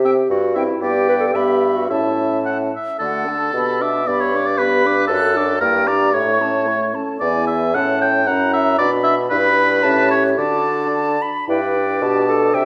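Lively and cheerful, this quick classical-period movement for wind quintet moves at 106-119 BPM in 2/4, with a rubato feel in D major. An airy, vibrato-tinged flute carries the melody high above the ensemble with a soft attack and an expressive, close-miked presence. Beneath it the oboe sings a clear second line with light vibrato, while a mellow, vintage-toned French horn and a warm clarinet fill in the accompaniment. The bassoon anchors the bass, sitting up front with light vibrato of its own. All five instruments play throughout the 12.7-second excerpt, which is cut from a longer piece and opens on a brief theme before a longer contrasting passage from 3.0 seconds, then circles back at 11.5 seconds, all set in a recital hall's reverberant glow.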